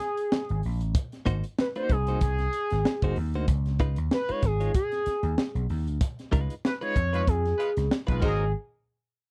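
Funk at 95 BPM with a gritty, strutting swing, cut from a longer piece: a smooth, sustained sawtooth synth lead with chorus and vibrato carries the melody over a crisp fusion kit with a punchy kick, high-tuned snare and bright cymbals, while a vintage slap bass thick with transformer saturation enters at 0.5 seconds, a twangy, direct-recorded clean guitar with tremolo joins at 1.3 seconds, and a tight horn section arrives at 7.1 seconds for the closing band accent, all in a dry, close sound.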